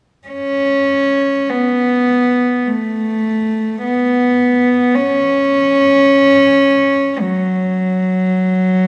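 A lone bowed cello enters at 0.3 s with a soft attack, playing sul tasto in free time, its pure, floating tone sitting close and up front as it moves between F#3 and C#4. This brief, yearning and meditative passage of expressive classical music is cut from a longer piece. The cello sounds through a moderate concert-hall reverb that lingers around it in a church or concert hall until the fragment ends at 8.9 s.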